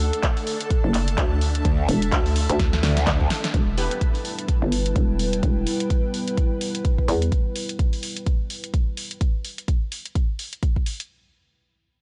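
A gritty, aggressive bass house excerpt opens mid-drop on a hollow, knocking FM bass with overdrive and sidechain pumping, house drums with handclaps, a punchy snare and bright hats, a layered electronic kick, and a cloudy granular pad with lush chorus. A saturated, wobbling growl bass with a formant filter bursts through from 1.6 to 3.3 seconds. A drum fill then leads into a new section where the granular pad fades out, a moody, detuned analog pad enters at 3.9 seconds, and a bold orchestra-hit-like synth stab with phaser, delay and a filter sweep flashes briefly while the kick and drums carry on under light reverb.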